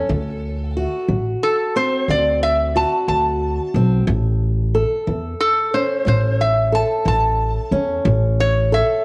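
Steeped in a moderate echo-chamber reverb, this swaggering, soulful acoustic country blues fragment moves at 60 BPM in 12/8, with an up-front, bright, nasal metal-body resonator slide guitar played with fingerpicks carrying the melody through slapback echo, a dark, boxy, fingerpicked old ladder-braced acoustic guitar on old strings beneath it, and an up-front, thumpy pizzicato upright bass with woody gut strings, all shifting from D7 to A at 4.1 seconds.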